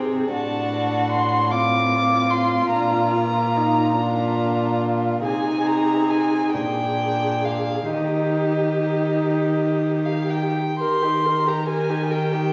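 A dark second violin, a woody, distant viola and a clear, nasal cello open this tender, lyrical slow movement for string quartet together, all bowed sul tasto, with the cello sitting close and pure beneath. At 0.3 seconds the first violin enters up front with the melody, intimate and smooth on top, its light vibrato and soft attack drifting freely in a rubato lilt of six. The quartet sounds in a reverberant recital hall, and at 10.8 seconds this fragment of a longer piece turns to a new section.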